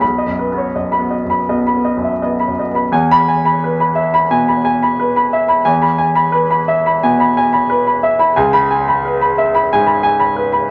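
The rhythm moves in a loose, rubato 4/4, drifting between 80 and 91 BPM so the pulse breathes rather than marches. This is a brief neoclassical minimalist piano piece, melancholic and wistful, cut from a longer work and tuned slightly low, with A4 at 436 Hz. A solo grand piano carries everything, spanning B1 to B5 with a clear, intimate and natural tone, sitting up front with its action noise plainly audible. The harmony rests on B, shifts to E at 2.9 seconds as a new section opens, and settles onto C#m7 at 8.4 seconds. A moderate studio reverb lends a small room's sense of space around the instrument.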